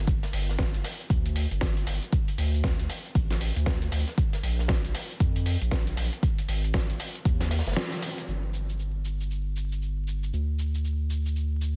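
A swung sixteenth-note groove in 4/4 drives this moody deep house fragment, cut from a longer piece. A deep, layered electronic kick sits up front and runs until 7.4 seconds. Around it, a gritty, compressed sampler-style soul kit supplies hi-hat, shaker and a medium-tuned snare. A round, dark analog bass with a sine-like fast attack and long sustain anchors the low end, pumping against a sidechain. In the background, an airy, polished acoustic big-band kit adds hi-hat and snare through high-pass filtering, its hats also pumping. It carries on through a brief break with a band accent at 7.8 seconds and drops out as a new section begins at 8.3 seconds. Vinyl crackle, light small-room ambience and a dense, heavily limited master lend the whole a warm character.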